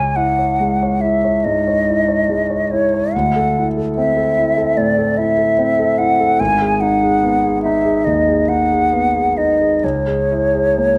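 A mellow silver flute carries the melody up front with airy vibrato and a soft attack, floating over a concert grand piano whose deep bass, long sustain and audible action noise give the accompaniment an intimate, polished presence. This hazy, wistful impressionist duo for flute and piano moves in a rubato 4/4 at roughly 64-75 BPM, tuned to A4 = 436 Hz, drifting through C#m, D9, G#m7 and C#m6. Close, detailed microphones sit inside a wet recital hall reverb in this 11-second fragment cut from a longer piece.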